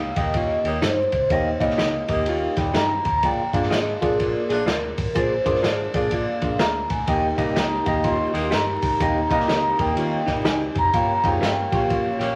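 Crackling vinyl, lossy artefacts and a wet 1.4-second studio reverb frame this uplifting excerpt of uptempo 1960s-style soul at 125 BPM with a swung feel, where a mellow soft-mallet vibraphone carries the melody over a dark, tight saxophone section, a round foam-muted picked bass, a barky phased tine electric piano, a gritty, saturated breakbeat kit, clean direct guitar stabs from 0.8 seconds, and a smooth tonewheel organ with fast rotary speaker entering at 7.1 seconds to hold sustained chords.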